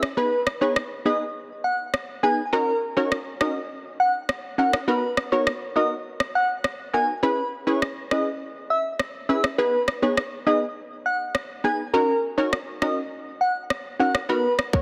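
A dense, heavily limited modern mix with light reverb and a digital ambience frames this tough, bouncy dancehall excerpt in G# minor at 102 BPM, tuned to A4 = 435 Hz. An up-front electronic island pop kit with a tight kick, rim click and a tape-warm, softly clipped snare sits under punchy, detuned sawtooth and square-wave chord stabs with a warbling vintage filter pluck and chorus. The stabs move through G#m, D#m7 and Bmaj7 during a break that runs until 7.2 s, then C#m7 arrives before the cycle returns. From 0.2 s, a round, gentle FM lead with a keys-like triangle tone, chorus and digital delay carries the melody.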